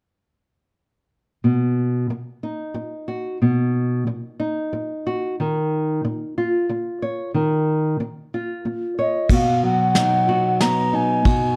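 Wistful and melancholic, this short acoustic folk excerpt in 3/4 opens with a dark, small-bodied nylon-string guitar, fingerpicked up front from 1.4 seconds over chords moving from B to Ebsus2 and back. At 9.0 seconds a breathy, reedy clay ocarina enters with a straight-toned, tongued melody softened by rolled-off highs and plate reverb, and a soft brush kit joins at 9.3 seconds with a punchy kick, medium-tuned snare, ride and crash. The production is dark and warm, set in a moderate studio room.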